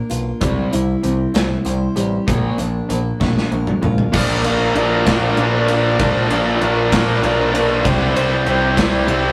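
Quiet-loud alternative rock in 6/8, dark and cathartic, where a full-bodied jumbo acoustic guitar picks bright arpeggios until 4.1 s beside growling overdriven bass, a big rock kit with punchy kick and rolled-off top, and a raw garage guitar riff, before a drum fill from 3.2 s gives way to two tight distorted guitar riffs, one up front and one double-tracked in the background, over C and Bb chords in a rough rehearsal-room sound with moderate stone reverb.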